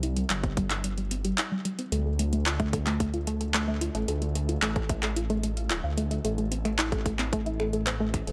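IDM at 111 BPM in 4/4, intricate and melancholic, this short cut from a longer piece moves from C5 to Dm at 1.9 seconds and Am at 6.2 seconds. A warbly, lo-fi pluck plays arpeggios from G3 to F5 under a filter sweep, with subtle chorus, digital delay and shimmer reverb, over a dark, rumbling detuned saw bass that sits deep and up front. A booming analog drum machine with finger snaps, handclaps and metallic hi-hats carries delay, joined from 0.4 seconds by a tight electronic kick, all set in a moderate echo chamber reverb.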